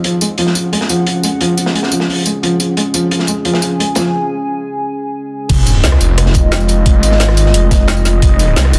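A straight 4/4 groove at 176 BPM drives this tense, futuristic slice of dark technical drum and bass in F phrygian, pairing a gritty, rolled-off breakbeat kit with high-pass filtering and an overdriven electronic kit of woody snare, bright hats, rim clicks, tambourine and crash, beneath a moody detuned analog pad swirling with chorus, phaser and sidechain pumping over Gbsus2. A soft, felt-muted upright piano, intimate with audible action noise and tape echo, plays arpeggios until 4.1 s, giving way to a brief break before the drop at 5.5 s, where a thick, saturated detuned saw bass sits up front over Fm7 alongside a knocking kick pushed through overdrive and a very quiet sub drop impact. The dense, heavily limited master carries light reverb.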